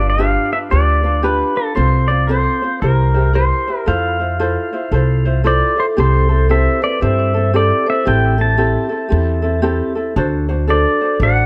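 A twangy, clean electric pedal steel guitar, played with fingerpicks, slide and volume swells, carries the melody up front through plate reverb and tape echo in this dreamy, relaxed Hawaiian piece at 115 BPM with a swung 4/4 feel, over a light, thumb-plucked acoustic ukulele and a woody, thumpy gut-string upright bass played pizzicato, while a ringing, metallic vibraphone with its motor off slips into the background at 5.5 s as the key moves from F major to C major at 6.0 s, all within a dark, warm production.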